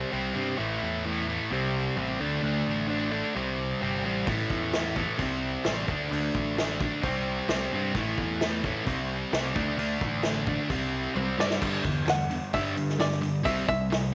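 A straight 4/4 pulse at 130 BPM drives this swaggering classic rock fragment, cut from a longer piece. From the start, a sludgy, double-tracked distorted guitar sits up front with an overdriven riff cycling through C5, A5 and D5, while a growling, bright picked electric bass carries its own overdrive underneath. The vintage acoustic drum kit enters at 4.3 seconds with a tight kick, medium-tuned snare, hi-hat, toms and dark crash cymbals, its gritty, saturated tone rolled off at the top. A drum fill at 11.2 seconds ushers in a new section where the harmony moves to G5 before landing on C. Here a twangy, percussive bluegrass banjo joins at 11.4 seconds, played with fingerpicks and carrying a slapback echo, while an echo chamber reverb with small room ambience surrounds the whole.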